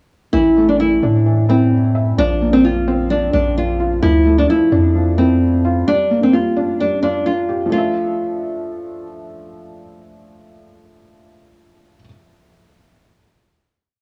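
From 0.3 s a fingerpicked, full-bodied nylon-string guitar loops a sampled-sounding melody up front, over a muted, intimate felt piano arpeggio in eighths with audible action noise and cassette tape colour, and long, deep sine 808 sub-bass notes, forming a dark, menacing half-time hip hop hook at 130 BPM in D minor, tuned slightly flat, in a small, wet booth ambience, before the bass stops at 5.8 s and the guitar at 9.1 s, leaving the mellow piano alone on the closing Dmadd9 chord.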